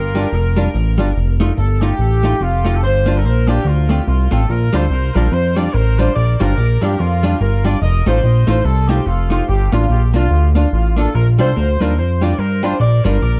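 A dark, warm production with light reverb frames this mischievous, energetic ska fragment, which swings its eighth notes and moves from its opening section into a second one at 4.5 seconds over changes built on Bb6, F7, Gm7 and Dm7. A fat, thick analog bass sits up front and carries the low end throughout, while a clean, compressed hollow-body archtop guitar, miked and amplified, supplies the accompaniment with a touch of tape echo. Above them a tight, vintage horn section states the melody with clear tone, light vibrato and its own tape echo.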